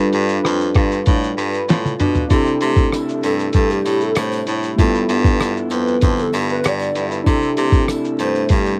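Indie bedroom pop, dreamy and nostalgic, cut from a longer piece: a muffled, tape-warm sampler-style drum kit with a thumpy kick and fat snare sits up front beside a punchy, forceful baritone saxophone with scooped notes carrying the bass, while a slightly broken-up, picked electric guitar through a small old amp drifts with analog chorus and warbly pitch, and a worn, slightly out-of-tune tine electric piano fills in the chords; a drum fill at 1.7 seconds leads into the next section, where a very quiet, jingly tambourine joins, and a mellow, wave-folded lead with vibrato takes the melody from 3.3 seconds, all set in the light reverb of a home cassette recording.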